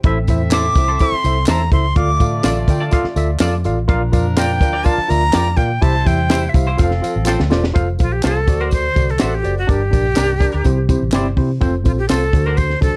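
A straight 4/4 groove at 124 BPM from a compact cocktail drum kit with a punchy kick and high-tuned snare, plus a round, foam-muted fingered electric bass up front, drives this joyful, uplifting 1960s-style soul piece in F major, where a breathy, reedy jazz flute carries the melody over a worn, slightly out-of-tune tine electric piano, compressed semi-hollow guitar stabs with analog chorus, close and dry tambourine and handclaps, and a distant horn section that drops out at 7.5 s during a drum fill that leads into a new section at 7.8 s, all within a dark production with light reverb.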